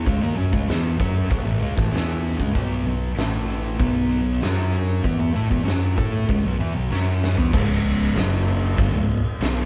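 A steady, straight 4/4 pulse at 96 BPM drives this ominous, hypnotic stoner doom metal clip, where a dark, double-tracked fuzz guitar riff moves through power chords from A5 to B5 and F#5 over a punchy, overdriven fingered bass and an oversized low-tuned kit with a boomy kick, fat snare and dark cymbals, all played live in a stone room, until a drum fill at 6.9 seconds shifts the riff to a C#5 and F#5 passage at 7.5 seconds.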